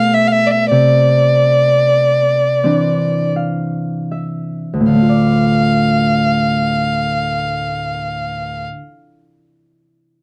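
Dry and close, this 1970s-style studio recording carries only light reverb, placing both instruments up front. It is a short excerpt from a Celtic folk slow air in 6/8, played freely in rubato with a mournful, longing mood. A single bowed fiddle with a dark, woody tone carries the melody, colored by light vibrato. A thumb-plucked acoustic Celtic harp accompanies with ringing, warm chords, moving from Gadd9/B to Cadd9 and later settling on Dm. The opening phrase slows as it unfolds, and from 2.6 seconds the harp adds a fill that runs until the new section begins at 4.9 seconds.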